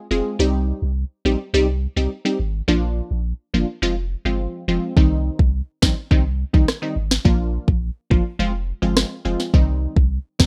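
A rough home-demo mix with light reverb frames this sultry, bouncy dancehall excerpt, opening on a crisp, nasal wavetable chord stab with a detuned unison filter pluck and moving notch, cycling through Cm, Bb and Fm over a deep, punchy sine sub bass with a pitch-drop attack. At 5.0 seconds an electronic afro-pop drum kit arrives up front, its deep kick, sharp snare and rim click driving the groove to the end.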